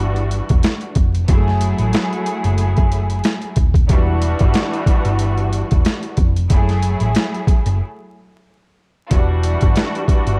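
Tough and dark, this boom-bap hip-hop excerpt swings over gritty, overdriven sampler drums with a thumpy kick and high-tuned snare, placed up front and joined by a round, hollow-body picked electric bass, while a distant, intense bowed string section with vibrato, filtered and tape-worn, drifts between Em9 and F#m9 chords in a dark production dusted with vinyl crackle, with a brief break at 7.8 seconds.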